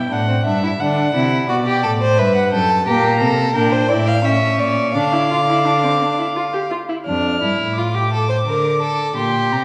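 An up-front second violin with light vibrato and a reedy gut-string tone stands out in this driving, solemn baroque-style fugue for string quartet in 3/4, above a dark, smooth-topped cello bass and beneath a distant, nasal first violin carrying the high melody, while a rich viola joins from 2.9 s to 7.0 s, the quartet heard from further back in a wet scoring-stage reverb in this short cut from a longer piece.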